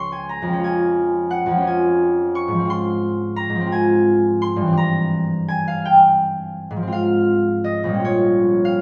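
Lilting in a rubato 6/8 at about 57 BPM with uneven, elastic beats, this mysterious, wistful classical fragment in F minor features a solo concert harp, warm, fingerpicked and ringing, placed up front in a moderate recital-hall reverb as it moves from Db harmony toward Fm/Ab by 2.7 seconds and settles on Gm7b5/Bb at 8.0 seconds, spanning a deep Bb1 to a bright Db6.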